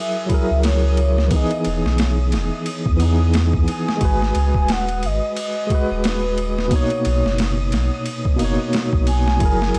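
Dry, gritty and flecked with vinyl crackle, this dark, hypnotic trip hop excerpt at 89 BPM swings lazily in 4/4 as a tremolo-laced tine electric piano and a breathy sine lead drifting through phaser, chorus and tape echo move over F#9, Emaj7, G#m7 and Bmaj9, joined at 0.3 seconds by a compressed, pitched-down boom bap kit with a thumpy kick, high-tuned snare and ride, and at 0.5 seconds by a round sub bass, while a flickering granular texture glimmers in the background.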